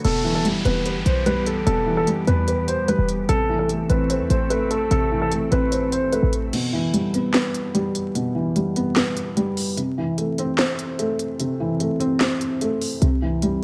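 An electronic downlifter and vinyl crackle open this melancholic, hard-hitting half-time trap piece in E minor at 148 BPM, where a dark grand piano melody and a soft, felt-muted upright piano with audible action noise sit up front over a glassy, ethereal FM pad with chorus in the background, a punchy, tight 808-style bass with a sine body and noise layer, and produced electronic drums with a sharp snare, crisp hats, handclaps and crash, all in light reverb, until a break at 6.5 seconds leaves the intimate upright piano and drums, and the bass returns at 13.0 seconds on a C chord.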